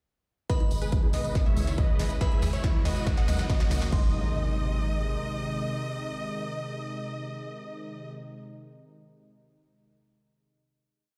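Heard through a big sound system in a bare room with a large studio reverb, this whole uplifting trance piece feels emotional and bittersweet, as a huge, detuned supersaw lead carries a repeating riff in thirds and sixths through a low-pass filter sweep, sidechain pumping and digital delay; a crystalline FM bell and a punchy unison pluck trace second lines in the background, a lush, chorused pad holds chords over a tight, nasal sequencer bass, and a layered four-on-the-floor kick and a tape-coloured analog drum machine with congas, crash, hi-hats and snare drive the build-up and drum fill alongside a jingly tambourine until about 3.9 s, while a very quiet riser and impact from 2.7 s lead into the final chord.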